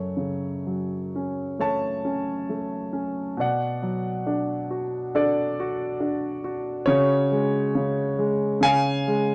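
Reflective and wistful, this brief classical excerpt for lyrical solo piano moves at a slow 68 BPM in 4/4, with a supple rubato feel in F# minor and tuning set to A4 = 441 Hz. A grand piano carries the whole passage alone, its warm, natural tone sitting up front and spanning a range from F#2 to A5. The harmony drifts from F#m to Bm7 at 3.4 seconds, then settles onto C#sus4 before resolving to C# at 8.6 seconds, leaving the phrase hanging as though more is to come. Light reverb lends a gentle sense of space, while the high end is softly rolled off, giving the sound a mellow, intimate character.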